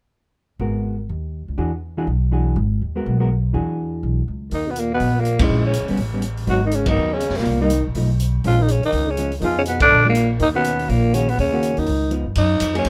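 Set in light reverb, with the woody upright bass and raspy, growling tenor saxophone up front, this cool, swinging small-group jazz excerpt opens on clean hollow-body guitar and pizzicato bass before the sax takes the melody at 4.5 seconds alongside a whispered, distant trombone second line and a roomy drum kit with dark cymbals and a boomy kick, the band hitting accents at 5.4, 6.8 and 9.8 seconds.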